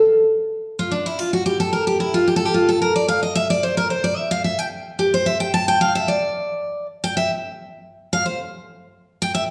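A bright, full-bodied dreadnought steel-string acoustic guitar plays an up-front picked solo from 0.8 s to 9.4 s, in a virtuosic, joyful bluegrass excerpt cut from a longer piece. The music moves at a brisk 221 BPM in straight 4/4 in F major, with the guitar ranging from D4 to A5. It sits in a wet recital-hall reverb with a 1.4-second decay, giving the sound the resonance of a church or concert hall.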